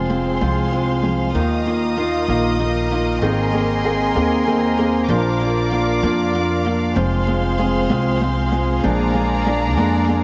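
A felt-muted upright piano, soft and dark with its action noise audible, opens this heartfelt, swaying six-eight pop ballad together with an intimate bowed string section played sul tasto with vibrato, a woody pizzicato upright bass and a fingerpicked dreadnought guitar whose arpeggios sit in the background. Piano, strings and bass stay up front as the chords move from F minor through Ebsus2, Abadd9 and Bb, return to F minor and then arrive on Bb7 near 8.8 seconds. A moderate plate reverb adds a gentle sense of space to this short section, cut from a longer piece.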